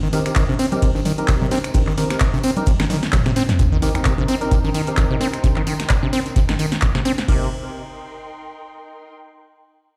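Gritty and driving, this acid house cut at 130 BPM in C minor rides a squelchy, resonant sawtooth acid bass riff with sidechain pumping and digital delay, hollow, chorused organ stabs, a deep, up-front electronic kick, and a punchy analog drum machine with metallic hats, snaps, claps, congas and toms, while a jingly tambourine sits in the background and a drum fill leads to an electronic impact at 3.6 seconds, where dark, veiled muted strings with vibrato enter and fade out, then linger alone until 9.1 seconds in a large studio reverb.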